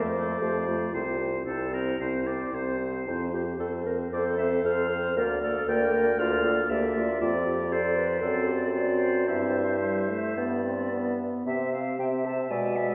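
A pure, vibrato-laden flute carries the melody over a distant oboe second line, a clear French horn and a mellow, up-front bassoon bass, joined at 0.2 s by a dark, smooth clarinet, in this cheerful, graceful fragment of a quick classical-period wind quintet movement played with rubato and bathed in the lingering reverb of a recital hall.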